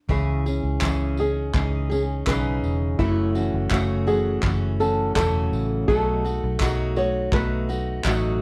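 Acoustic pop, wistful and tender, in which a dark, woody, thumb-plucked flamenco guitar carries the melody with a slapback echo over a full-bodied picked steel-string acoustic guitar, a round, foam-muted vintage electric bass placed up front, an unplugged small-room drum kit of handclaps and punchy kick, and a jingly tambourine in the background, moving through C#madd9, F#m7 and B7 under light reverb and the warbling pitch drift of worn cassette tape.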